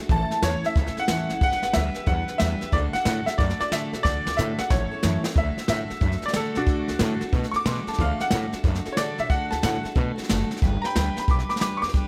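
A swung eighth-note feel drives this rowdy, retro rockabilly fragment, with a polished brush kit sitting up front in an airy small room, its boomy kick and snare joined by a woody, thumpy pizzicato upright bass and a full-bodied, picked jumbo acoustic guitar. A brilliant, worn upright piano, slightly detuned with audible action noise and long sustain, carries the melody through an analog delay. After a drum fill from 4.0 to 5.4 seconds, the piano takes a solo from 5.4 seconds over chords moving between D, G and A, all set in a studio reverb.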